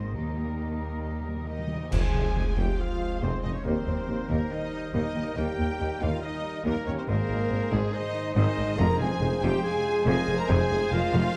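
A dark, warm orchestral sound in a moderate scoring-stage reverb carries this excerpt of a heroic adventure film score in F minor, soaring at 140 BPM in a straight 4/4, with a lush violin section singing the melody over airy flute, clear oboe, mellow clarinet and a very quiet second violin line, while violas, dark trombones, mellow French horns, ringing fingerpicked harp and trumpet stabs fill the middle and rich cellos and double basses anchor the bass. Soft-mallet timpani open with a fill from 0.2 seconds, then at 1.9 seconds an up-front crash of dark clash cymbals and concert bass drum marks a band accent as a vintage-tinged tuba joins the bass. The harmony moves from Eb to F minor, Eb and Ab before returning to F minor, where the timpani briefly return near 8.8 seconds.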